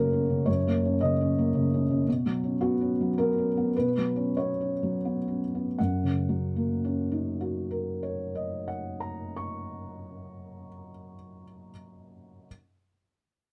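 A close, modestly ambient booth sound frames this short solo for felt-muted upright piano, a hopeful and intimate slice of neoclassical minimalism in a rubato triple metre. The piano sits up front with a dark, thick-felted tone, and the audible action noise of its mechanism adds to the closeness as it spans from low bass to the upper treble. The playing slows from 1.3 to 5.8 seconds, moving from an F#6 chord to Bsus2, then returns to F#6 at 5.8 seconds as a new section begins.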